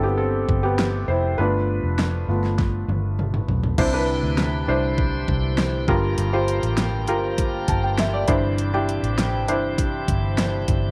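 A soft, intimate felt-muted upright piano opens this hopeful, anthemic piano-driven pop excerpt in C major at 100 BPM, carrying an opening solo over a dark, round, foam-muted electric bass while a produced, layered pop drum kit joins with a knocking kick, fat snare and overdriven grit, rolling into a drum fill at 2.6 seconds. At 3.8 seconds a piping, scooped tonewheel organ slips in underneath with sustained, lightly overdriven chords, key click and a slow rotary speaker, moving through Cadd9, Gm7 and Cadd9/G. The mellow piano stays up front and adds a fill at 7.4 seconds, all set in a light reverb.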